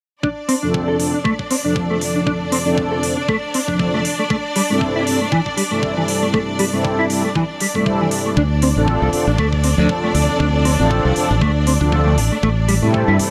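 Cosmic and sleek, this nu-disco excerpt at 118 BPM in D minor swings lightly over Dm7 and Am7 as knocking, tape-warm electronic kick and crisp hi-hats drive a dark, clean electric guitar riff with chorus and dub echo, round detuned synth brass accompaniment sitting up front with sidechain pumping, and a focused bowed string section holding sustained chords, before a bright, growly fingered electric bass enters at 8.4 seconds.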